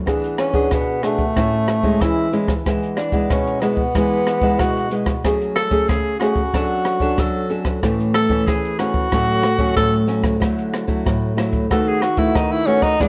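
This samba and choro excerpt moves at 93 BPM in 4/4 with a straight feel in A major, and its mood is joyful and playful. A fingerpicked nylon-string guitar opens at 0.0 seconds with classical-style accompaniment, sitting up front with a warm acoustic tone across a range from A2 to A4. An open jazz drum kit joins at 0.1 seconds with hi-hat, rim click and a boomy kick, its acoustic sound placed up front in a small room. From 0.4 seconds a close-miked tenor saxophone takes the solo between A3 and A4 in a jazz style, its warm tone shaped by subtone, soft attack and vibrato. The harmony moves through chords such as E7, Amaj7, F#madd9, Dmaj7/F# and Dadd9, with B7/D# as the last chord of the excerpt. A moderate large studio reverb surrounds the performance, and a worn, warbling cassette-tape character adds a warbly pitch drift.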